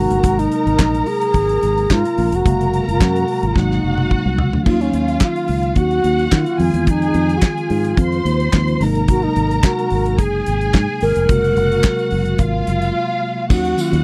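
Disco at 109 BPM with a driving, sultry mood, cut from a longer piece: an airy wooden-headed alto flute carries the tongued, slightly unsteady melody with vibrato, over a lush, dark symphonic string section, a mellow tine electric piano heard through its built-in speakers, and a round, foam-muted fingered electric bass. A damped 70s drum kit sits up front with a fat snare, tight kick, hi-hat, handclaps, toms and crash, playing a fill from 3.6 to 4.7 s before the harmony moves through Ebm9 and Fm7, while a jingly tambourine appears only at 13.5 s. The sound is a dry, close 1970s-style studio recording with little reverb.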